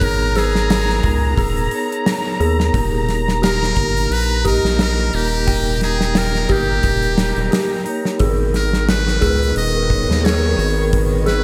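Soaked in plate reverb and small-room ambience, this dreamy, smoky trip hop fragment sets a buzzy, close-miked trumpet with metal mute carrying the melody over ringing vibraphone accompaniment with harmonic tremolo and tape echo, smooth bowed studio strings, an eerie chorused synth bell arpeggiating in the background, a deep, up-front analog bass and a gated 80s drum kit with a tight kick, all moving with a cinematic, swung feel from G#madd9 to D# and back.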